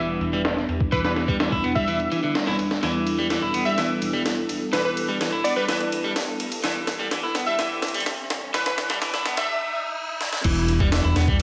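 Gritty, energetic breakbeat in a straight four, cut from a longer piece, built as one long filter-swept build-up over an Em7 chord, with drum fills from 2.8 seconds, a background electronic riser from 4.9 seconds and a break at 9.5 seconds. Up front, a pitched-up, compressed sampler-style kit with a thumpy kick and high-tuned snare drives beside a slightly broken-up picked electric guitar riff with tube saturation, 12-bit sampler grit and analog delay, while a fat, detuned sawtooth bass holds the low end. Above them, a punchy, catchy unison lead melody comes through a small-speaker, cassette-worn tone with analog delay, over a lush, airy pad with chorus, phaser and sidechain pumping, all inside an echo-heavy mix with a wet chamber reverb.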